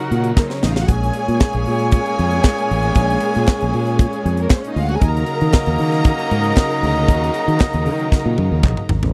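A dry, close 1970s-style studio sound with little reverb frames this short cut from a longer disco track, moving at 116 BPM in a straight 4/4 with a driving, sultry mood over an Ebm7 chord. Up front, a tight funk drum kit with a high-tuned snare, tight kick, hi-hat and toms sets the pulse, with drum fills at 0.4 seconds and again from 8.1 seconds to the end, while a punchy fingered electric bass sits directly alongside it with an amped, direct tone. Two bowed string sections fill out the harmony: a lush, smooth section with vibrato carries a second line high above, and a clear, focused section in the background holds sustained chords lower down. A horn section with light vibrato adds tight pop-style stabs that sound distant and roomy. Very quiet, hollow group handclaps from a small room sit far back in the mix for almost the whole passage.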